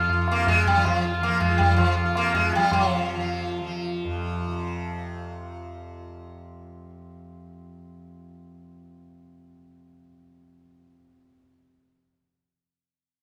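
In a straight 5/4 at 161 BPM, this solemn, meditative fragment of Hindustani classical music, tuned to A4 = 437 Hz, places an up-front, plectrum-plucked sitar melody, round and buzzing with shimmering sympathetic strings, over a bright, softly plucked tanpura drone that sustains to 11.6 seconds, while a high-tuned, short-ringing tabla plays only until 2.9 seconds and the sitar falls away at 6.0 seconds, all set in a wet recital-hall reverb.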